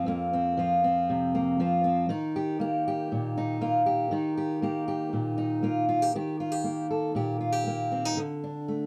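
In a straight 4/4, this short folk fragment cut from a longer piece has a warm, nostalgic mood, carried entirely by a solo fingerpicked steel-string acoustic guitar. The guitar sits up front with a full-bodied, warm tone and the sound of fresh strings, moving from Fsus4 to Eb before a new passage begins at 6.1 seconds and settles on a D5 at 8.2 seconds. Light reverb gives the performance a gentle sense of space.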